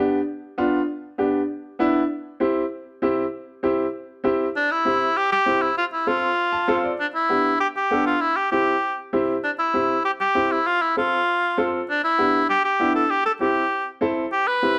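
A warm cor anglais carries the melody in a classical style with light vibrato, close-miked and up front as it enters at 4.6 seconds over a festive, danceable Latin groove. A clear, woody upright piano opens the piece alone and supplies the polished accompaniment, adding a brief fill at 6.4 seconds as the harmony cycles through G, C and F. Moderate studio reverb and a dark production frame this short, cut-off passage from a longer piece.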